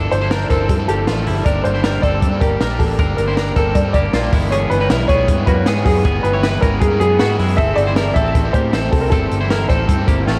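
Jangly indie pop at 157 BPM in a straight 4/4, this bittersweet, restless excerpt is carried by a worn, woody, slightly detuned upright piano melody over chords moving from Dmadd9/G to E/G at 4.3 seconds and Am/G at 7.6 seconds. Beneath it, an overdriven semi-hollow guitar plays a picked accompaniment while a bright, twangy direct-recorded clean guitar plays arpeggios through lush chorus and digital delay, and a dark, round, foam-muted fingered bass anchors the low end. A compact cocktail kit enters at 0.1 seconds with a punchy kick, high-tuned snare and hi-hat, all set in a dreamy mix soaked in huge ambient reverb and laced with vinyl crackle.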